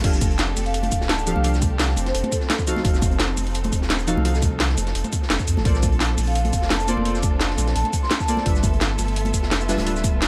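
Warm and uplifting, this liquid drum and bass excerpt at 171 BPM in F major rides a punchy electronic kick, a cracking, up-front drum and bass kit with metallic hats, a gritty, saturated breakbeat kit and bright congas tucked in the background beneath a round sub bass, while a deep, chorused chord stab with tape echo and a veiled, con sordino string section carry the F69, F7b9, Bbmaj9 and G13 changes, and a mellow, soft-mallet vibraphone with tape echo plays brief melodic phrases from 0.7 and 6.3 seconds.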